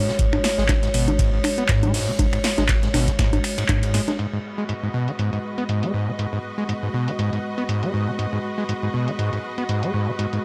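A squelchy, resonant sawtooth acid bass sits up front, its overdriven riff carrying a tape echo through this hypnotic, gritty acid house excerpt at 120 BPM with a light 16th-note swing in G# minor pentatonic. It opens on a drop where a deep, tape-warm electronic kick lands and a thick, saturated sine sub bass in the background pumps beneath a moody, detuned, wave-folded analog pad that holds slow-attack chords with chorus. A punchy electro drum machine with metallic hats, handclaps, finger snaps and congas sits close, while a vintage acoustic kit with dark cymbals and a rolled-off top adds hi-hat, ride and snare from further back. The full band hits an accent at 3.7 seconds before the kick, sub bass and acoustic kit fall away. From 4.2 seconds a smooth, bowed string section with vibrato joins the pad and acid bass, the harmony moving from G#7(no3) to G#m7 as the drum machine keeps driving under a moderate studio reverb.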